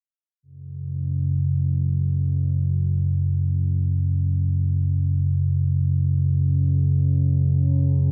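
A deep, rumbling drone emerges at 0.4 seconds and holds alone until 8.1 seconds, sounding from F#2 to C#3 in free time in this short ambient fragment cut from a longer piece. Its dark tone blends triangle and sawtooth colours, opening with a slow attack, sustaining steadily and trailing off through a long release. The drone sits up front, carrying its own built-in reverb, while the whole recording is bathed in a wet cathedral reverb with a decay of 6.7 seconds. Tuned to A4 = 438 Hz, the piece carries an ominous, unsettling mood, its single sustained voice filling the vast space with foreboding.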